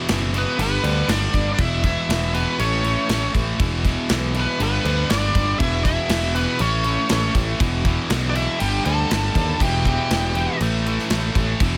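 Set in a small room, this menacing, driving hard rock excerpt at 120 BPM in E dorian puts a punchy, polished big rock drum kit with bright cymbals and a growly picked electric bass up front, while a cranked stack guitar and two overdriven distorted electric guitars (one double-tracked) churn out a low riff beneath a biting lead guitar melody and a nasal, parked-wah second lead in the background, both leads playing from 0.4 to 10.6 seconds over chords moving between E5, G and A.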